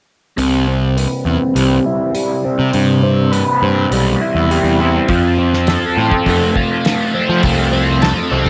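A light reverb and small-room ambience frame this short psychedelic rock excerpt, whose mood is trippy and kaleidoscopic over a straight 4/4 feel. Guitar, bass and drums all come in together at 0.4 s. A biting, bright overdriven electric guitar sits up front and double-tracked, playing a picked riff through a rotary speaker and low-pass filter, with a filter sweep shaping its tone for the whole passage. Beneath it, an up-front picked electric bass adds fuzz and overdrive in a direct-and-amped tone. The cloth-damped drum kit is thuddy, dry and dark, with a fat snare, a tight kick, hi-hat and a rolled-off top sitting further back. The harmony moves from Cmaj7 to F at 5.1 s.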